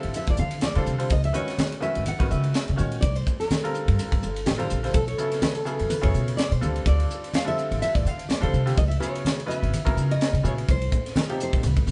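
A woody, thumpy pizzicato upright bass on gut strings anchors this driving, intense excerpt of live-sounding electric jazz fusion with a sixteenth-note swing, joined by a crisp, up-front drum kit with a high-tuned snare, punchy kick, hi-hat and ride in a pumping small room, a full-bodied fingerpicked nylon-string guitar carrying the melody with audible finger squeak, a brilliant yet worn grand piano comping with short sustain until 11.6 seconds, and thin-skinned, low-tuned congas played with soft hands in the background from 0.2 seconds, all moving through sus and minor-seventh chords under light reverb.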